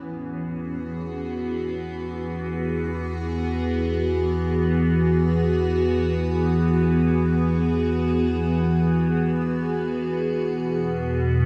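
Floating in free time, this ambient fragment from a longer piece rests on a single E major chord, tuned slightly sharp to A4 = 441 Hz, and feels weightless and luminous. An evolving wavetable pad sits up front, holding sustained chords between B2 and G#4 with a slow attack and long release; its bright, morphing unison triangle tone is colored by a phaser and its own reverb. At 0.5 seconds a deep, rumbling drone on E2 joins underneath, a dark, ominous bass layer blending triangle, sawtooth and sine waves, wave-folded and warbling with a vintage character. Both parts fade in gradually across the full 11.5 seconds. The whole mix is soaked in a huge, dreamy reverb with a 7.7-second decay, so the sounds blur into one glowing, suspended haze.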